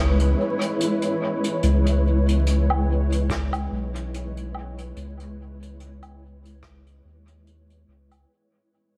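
A hazy, meditative ambient dub fragment, cut from a longer piece, opens on a cloudy granular pad holding a C#m7 chord, its detuned, blurred tone evolving within its own built-in reverb, while a round, soft sub bass sits up front with a deep, sustained presence. Brushed acoustic drums join almost at once, a natural kit with a rolled-off top playing hi-hat, rim click and woodblock, their strokes trailing into dub echo. At a slow 72 BPM in 4/4 with a gentle swing on the sixteenths, the groove feels unhurried and dreamy. From 3.3 to 6.8 seconds a muffled, pitched-down electronic kick thumps quietly in the background, its tape-warm, compressed character adding weight beneath the brushes. Vinyl crackle and light small-room ambience wrap the whole mix as it fades out across its brief length.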